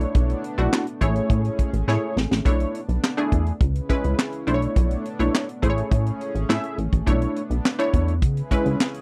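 Early-eighties boogie funk at 104 BPM in B dorian, this late-night cut pairs a tight, up-front acoustic drum kit with a high-tuned snare, handclaps, hi-hat and a fill at 1.9 seconds against a punchy, plucky analog bass and a detuned, chorused polysynth comp, while a shimmering pulse-width pad sustains Bm11, Amaj7 and C#m7 chords in the background of a dry, close 1970s-style studio sound.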